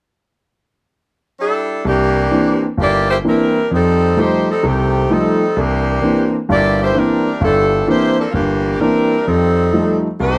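Jazz excerpt at 130 BPM in 4/4 with a swinging, energetic mood and a swung eighth-note feel in C mixolydian, led by a clear, up-front saxophone section carrying the melody with soft attacks and vibrato from 1.4 seconds, joined at 1.8 seconds by a warm concert grand piano with deep bass accompanying over chords moving between C9 and F9, all captured with close, detailed microphones and light reverb.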